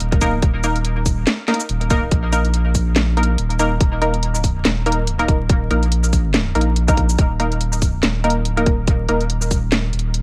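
A dry, vinyl-crackled deep dubstep excerpt, meditative and cavernous, built on a half-time swung groove where a thick, saturated sub bass and a tight electronic kick sit up front beside a garage kit of cracking snare, warm hats and shaker, while muted, detuned chord stabs with filter sweeps, chorus and dub echo drift overhead, and the kick drops out from 3.0 to 3.8 seconds.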